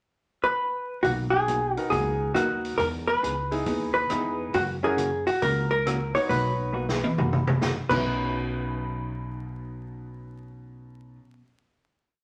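A swung two-beat country groove drives this short, cheerful western swing piece, with an upright bass walking up between roots and fifths under four-to-the-bar hollow-body rhythm guitar and a vintage kit keeping time on the hi-hat with a punchy kick and a drum fill at 6.7 seconds. A dark, clean hollow-body guitar carries the motif-based melody up front from a pickup bar, while a clear upright piano with short sustain adds syncopated comping in close voicings from 1.8 seconds. Moderate studio reverb and vinyl crackle give it a vintage sheen, and it closes on a final hit from 8.1 seconds.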